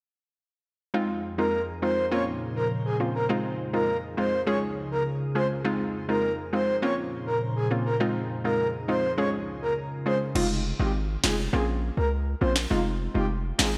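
A bright, 1980s-style digital sheen and a lush hall ambience frame this hypnotic, tough dancehall excerpt in F minor at 102 BPM, where a soft, round pluck with chorus and a glassy, warbling FM pad carry cycling Fm7, Bbmadd9 and Db chords while a breathy, flute-like synth lead with vibrato and digital delay sings the melody. At 10.4 seconds the pad drops out and a punchy, heavy 808-style bass arrives with an electronic afro-pop kit, its sharp snare and crash cymbal bathed in gated reverb. The kick stays muted as the bass and drums sit up front through the closing bars.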